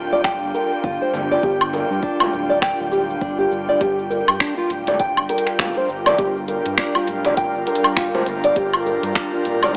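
A gritty, saturated hardware sound with a small-speaker edge sits inside a lush hall reverb on this hypnotic organic downtempo excerpt, which swings gently over a Gm7 chord. An up-front airy, breathy pad with chorus, shimmer reverb and sidechain pumping is underpinned by a smooth, mellow synth bass with vibrato, while a dark, thumb-plucked nylon-string guitar plays arpeggios through tape echo and a filter sweep that runs until 3.8 seconds. An afro-pop kit of finger snaps, metallic hi-hat, shaker and woodblock plays alongside a deep electronic kick, and a distant, deep frame drum joins in the background at 1.1 seconds.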